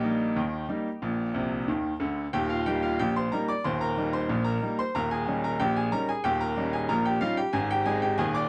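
A bright grand piano carries this short solo ragtime passage, sounding brilliant and intimate, placed up front with audible action noise and long sustain. The mood is playful and jaunty, moving at 92 BPM in 2/4 with a straight feel in Eb major, and the tuning sits slightly low at A4 = 437 Hz. The piano covers a broad span from Eb1 up to D6, and a brief fill appears between 1.3 and 2.3 seconds. The harmony moves from Eb/Bb through Bb, Eb and Eb7 before arriving on Ab at 7.5 seconds. A moderate small-room reverb and a dark, warm production surround the instrument across the 8.5-second clip, which is cut from a longer piece.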